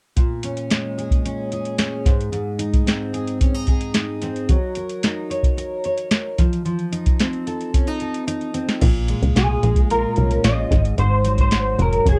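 A fingerpicked steel-string acoustic guitar and a soft vintage rhythm box open this hazy, mellow slice of indie bedroom pop in Bb minor at 111 BPM. The jumbo guitar sounds full-bodied with fresh strings, colored by subtle chorus and warbly pitch drift, while the analog drum machine brings a deep kick, crisp snare, metallic hats and a crash, sitting up front in the mix. The chords move from Bbm7 through Ab and Gb6 to F7, and a drum fill leads into a new section at 8.8 s, where a plucky analog bass enters with a punchy, nasal, funky filter pluck. At 9.4 s an electric guitar through a small old amp takes the melody, its slightly broken-up, lo-fi tone thickened by ensemble chorus and slapback echo over Bbm7 and Ab7. The whole recording is dry and close, like a 1970s studio session, and it is cut from a longer piece.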